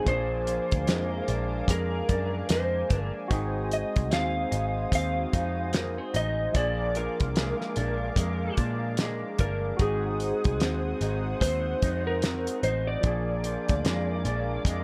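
Nostalgic and laid-back, this bedroom-pop excerpt moves at an unhurried 74 BPM with a gentle swing, shifting between Bb7 and Ab7 chords. A compressed, slightly broken-up slide guitar carries the melody through analog chorus, over a cloth-damped, thuddy drum kit with a fat snare and tight kick and a round, foam-muted picked bass, both up front. Behind them sit a dark, lo-fi electric guitar through a small old amp with subtle chorus and vibrato, a barky, lightly overdriven tine electric piano with cassette-tape colour, and a smooth, nasal, detuned sawtooth pad holding sustained chords, all in light reverb.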